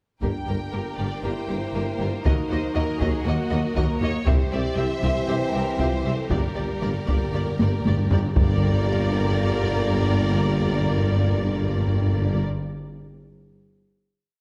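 A dark, epic orchestral film cue opens at 0.2 s with strings, brass and a taiko ensemble together, the taiko driving a big ostinato with hard sticks in a live room. Above it, a lush violin section carries the melody in expressive, vibrato-rich repeated notes with a soft attack and smooth top. A second violin line weaves a quiet counter-melody behind it, and a very quiet viola section adds rich repeated notes. Mellow French horns sound the melody in the background over sustained string chords and very quiet, slowly swelling trombone chords. The low end is heavy, with repeated cello bass notes, a woody double bass section and a soft-attack solo tuba doubling the bass line. Timpani with calf heads enter at 6.3 s with a fill, the taiko add their own fill just before 8.4 s, and the taiko fall away at 9.3 s while the orchestra and timpani hold a final chord in a moderate recital-hall reverb.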